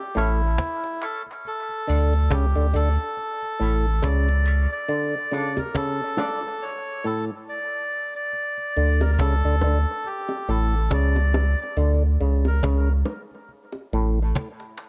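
A deep, round sine sub bass sits up front in this heavy, spacious dub reggae excerpt, joined by a close, dry cajon with hard hands and faint snares, plus tight, high-tuned bongos soaked in dub echo. A reedy, breathy melodica carries the melody with echo trails, while a stringy, percussive auto-wah clav repeats a low riff and a bright, twangy envelope-filtered guitar with tremolo hangs in the background until 6.5 seconds. A filter sweep opens the piece, a break arrives at 4.9 seconds, and a second sweep returns near the close, all within light reverb and studio ambience.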